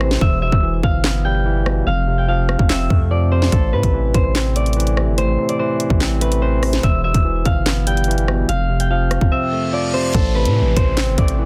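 A ringing, fingerpicked concert harp melody filtered and echoed with delay opens this menacing, cold half-time drill excerpt at 145 BPM, over a barky, clean tine electric piano through a combo amp, a deep, long sine 808-style bass and an up-front, tape-warm electronic kit of hard-clipped kick, sharp snare, rim clicks, handclaps and bright hats, all moving through Em, F and Am in a dry, dense, heavily limited mix, with a break at the start lasting until 3.5 seconds and a reverse cymbal and downlifter entering at 9.5 seconds.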